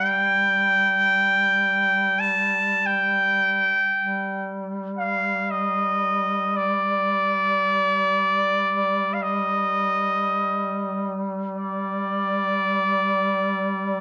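Longing and mournful, this short fragment of a Caucasian lament unfolds in free time, tuned slightly low with A4 at 438 Hz. A trumpet with a straight mute carries the melody up front, its tone bright yet nasal and vintage, played in a classical style between D5 and A5. Beneath it, a mellow duduk holds a drone on G3, set distant and roomy, with vibrato and scooped notes that give it a folk character. Both parts sound together from 0.0 to 14.0 seconds, the trumpet clearly louder than the duduk. A moderate recital hall reverb surrounds the pair, and the sound carries the wear of old cassette tape, with a warbling pitch drift coloring the whole recording.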